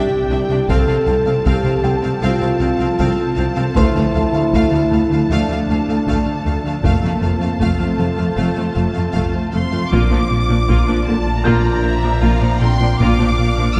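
An intense, distant violin section carries the melody high above this brooding, futuristic hybrid film score, with a second violin line moving smoothly beneath it at a slow 78 BPM in 4/4. Focused violas fill the accompaniment while dark, roomy French horns hold sustained chords, and a glassy FM pad with ensemble chorus and its own reverb shimmers ethereally in the background. A smooth, detuned synth bass riff anchors the low end, joined by rich cellos and very quiet double basses, while a felt-muted upright piano adds an intimate, vintage texture with audible action noise. From 0.7 seconds, a close, dry taiko ensemble struck with hard sticks plays in the background. The harmony moves from Cadd9 through F/C, Dm and F before shifting to Bb at 9.9 seconds, where mellow trombones and a deep, full sub bass enter. The whole mix sits in a dark production with a long concert-hall reverb, and this passage is cut from a longer piece.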